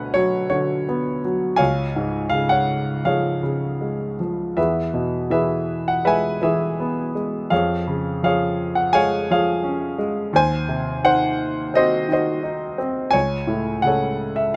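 With uneven, rubato beats around 83 BPM in 4/4, this bittersweet, brooding fragment of a lyrical classical solo sits a clear, natural grand piano up front across its 14.6 seconds, its notes of short sustain ranging from C#2 to G#5 under light reverb and close, detailed microphones as the harmony drifts from Bmadd9/D through C#, E and G#7/D# to a closing F#m9/C#.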